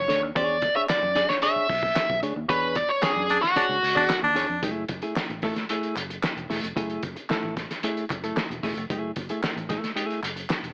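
A nasal, overdriven lead guitar with a parked wah carries the melody over a dark, foam-muted fingered bass from the opening of this cool, sly funk cut, while a twangy, compressed clean guitar and a cloth-damped, thuddy drum kit with a fat snare join almost at once. Hollow group handclaps sit in the background from 0.9 s, and an edgy, forceful baritone saxophone with vibrato pushes up front from 3.3 s through a band accent, before the lead guitar falls away and the groove moves to a new chord at 4.6 s. The mix carries an AM radio character with moderate studio reverb.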